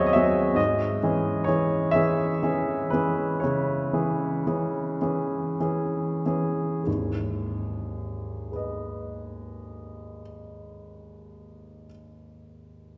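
A clear, intimate baby grand piano carries this melancholic romantic nocturne alone, its natural tone close and up front with audible action noise and long sustain, ranging from G#1 to E5 in G# minor. The mournful 12/8 phrasing moves in free rubato at a very slow 29-46 BPM, easing as it slows through the opening 6.9 seconds over chords of G#7 and C#m/G#, before settling onto G#m for the second section. A wet church reverb with a 2.9-second decay surrounds the playing in this passage cut from a longer piece, tuned slightly low at A4 = 437 Hz.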